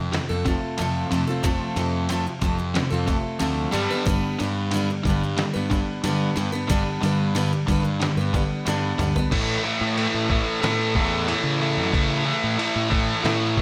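Quiet-loud alternative rock at 91 BPM in a straight 4/4, bittersweet and cathartic, cut from a longer piece and tuned slightly sharp to A4 = 444 Hz. A biting, double-tracked overdriven guitar riff and a fuzz-toned fingered bass drive over a muffled, pitched-down sampler-style drum kit with a thumpy kick, while a jumbo steel-string acoustic guitar picks full-bodied arpeggios through plate reverb until 9.3 s. A drum fill at 8.7 s carries the harmony from F and G into a new section on A, where the electric guitar, bass and drums play on in a moderate studio room.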